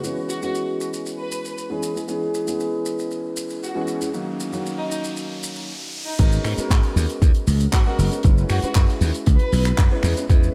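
Nu-disco in G# minor at 117 BPM, groovy and sensual, this excerpt opens on a dark, mellow baby grand piano with lush chorus, sidechain pumping and tape echo, while a dry 70s drum kit of hi-hat, shaker, finger snaps, handclaps and crash cymbal ticks along and a woody, bowed violin section carries the melody with vibrato and delay. An electronic riser builds from 3.8 s into the drop at 6.2 s, where a punchy, up-front electronic kick and a bright, growly slap bass arrive beneath chords moving through F#9sus4, E6, D#m7 and G#m11. The sound sits in a small room with light reverb.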